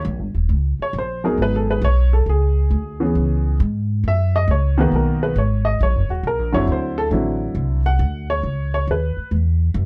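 A swung 4/4 at 136 BPM drives this late-night, moody jazz piano trio passage, cut from a longer piece. A baby grand piano carries the melody and takes a solo from the start, its intimate, natural tone close up front, with short sustain and the audible noise of its action. An upright bass plays pizzicato beneath it, woody and acoustic on steel strings, also up front. The harmony moves through rich colors such as G#m7, C#m7, Bmaj7, D9 and C#m9. The piano drops out at 9.3 seconds, leaving the bass to finish at 9.9 seconds, all set in light reverb within a dark, warm production.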